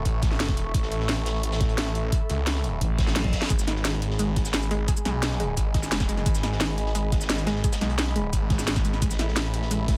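A gritty, overdriven sound opens this excerpt of aggressive, mechanical dark technical drum and bass at 174 BPM in G# phrygian, where a snarling, detuned saw bass and a warbling lo-fi pad with sidechain pumping sit under a knocking electronic kick, a cracking drum and bass kit with bright hats and a saturated breakbeat kit in the background, while a thick FM bass growls briefly at 2.8 seconds, a reverse cymbal and drum fill lead to 3.5 seconds, where a round analog pluck begins arpeggios with tape echo over a move from A to G#m.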